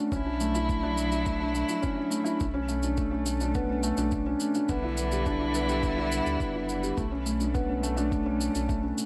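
Light reverb frames this hypnotic, moving piano and strings electronica excerpt in B minor at 105 BPM, where a soft, dark, felt-muted upright piano riff with audible action noise and tape echo sits up front, while a distant, expressive bowed string quartet sustains rich chords with vibrato and portamento and, like the round sine sub bass, pumps with sidechain compression beneath a muffled, thumpy sampled kick drum and a tape-warm electronic shaker, as the harmony moves through Dmaj9/B, Bm9 and Em7/B.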